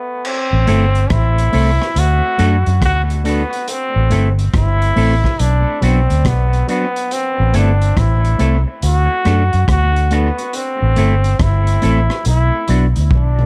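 Roots reggae at 70 BPM in 4/4, this serious, meditative passage sits in A dorian with a swung sixteenth-note feel, cut from a longer piece and cycling through Am, D, Am and Bm. A brilliant, vintage-toned trombone carries the melody up front from the very start, with a soft attack, light vibrato and tape echo trailing its lines. The crunchy breakbeat kit of kick, rim click, hi-hat, toms and crash cymbal arrives at 0.2 seconds, sounding saturated and gritty with a punchy kick, dark cymbals and a rolled-off top, all thrown into dub echo. A round, foam-muted fingered electric bass sits loudest in the mix, amped and up front, while a clean, picked electric guitar with an envelope filter and tape echo adds accompaniment until 12.9 seconds. The sound is dry in terms of room reverb but heavy with echo, and a drum fill closes the passage from 13.1 seconds.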